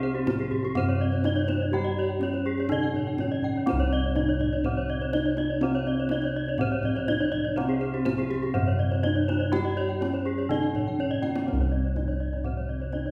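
A bronze metallophone carries the melody of this ceremonial, shimmering Balinese gamelan excerpt, struck with padded disc mallets for a mellow, soft ring whose paired tuning sets up beating tones in a slightly boxy, warm space. Beneath it, a lower metallophone plays the accompaniment with a horn mallet, its sound vintage and band-limited, while bossed gongs anchor the bass with a round, bright, pulsing bronze tone. Two higher metallophones spin out arpeggios with horn mallets, sounding airy and bright as their paired tuning adds further shimmer. The kendang sits in the background, deep and played with soft hands, entering at 0.1 seconds and adding a brief drum fill from 11.0 to 11.5 seconds before the opening material returns. The piece moves at a steady 123 BPM in straight 4/4 in C pelog, and the whole ensemble rings out in a reverberant recital hall.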